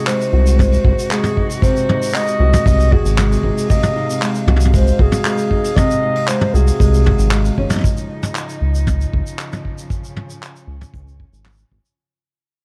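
Folktronica with a warm, playful mood, cut from a longer piece, where a dark, distant clarinet carries the melody with tape echo until 7.6 s over bowed string-quartet chords with vibrato, fingerpicked nylon-string guitar arpeggios also touched by tape echo, a vintage brush kit with handclaps, hi-hat, shaker and toms, a punchy kick drum, and a round, deep analog bass sitting up front, before the music fades out from 7.8 s in a small, lightly reverberant room.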